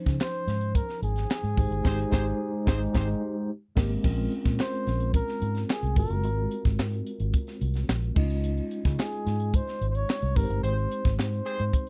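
A mellow tine electric piano opens this glossy, upbeat slice of polished 1980s jazz-funk pop, its chords shimmering through a lush chorus. Almost at once a crisp fusion drum kit joins, with a high-tuned snare, punchy kick, hi-hat and crash sitting up front, alongside a dark, round, foam-muted fingered bass. A breathy flugelhorn carries the melody in an intimate, whispered jazz style, its soft attack and scooped notes trailed by a slapback echo, while very quiet group handclaps add a hollow accent. A clear, punchy horn section steps in for band accents at 1.8 seconds and again at 10.6 seconds, while the harmony moves through jazzy extended chords such as Dbmaj9, Bbm9 and Ab13. The dry, close studio sound keeps every part distinct, and the passage is cut from a longer piece.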